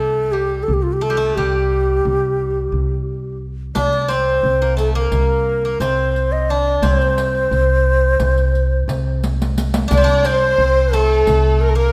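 A breathy, mellow ney carries a melancholic, hypnotic melody over an upright bass holding a low C and a bouzouki's metallic, double-string second line in this cut from a longer Turkish makam ensemble piece. It moves in 9/8 at 175 BPM counted in eighths, with a straight feel in C makam huseyni. The end-blown reed cane sits up front with vibrato and soft attacks, while the pizzicato bass is woody and dark beneath it and the picked bouzouki adds a bright edge at a lower level. A riq with bright jingles and soft hands enters at 3.8 seconds, and a drum fill around 9.2 seconds leads into a fresh pass of the theme. At 9.9 seconds a rich studio violin section joins with a smooth, bowed second line, all set in a moderate scoring-stage reverb.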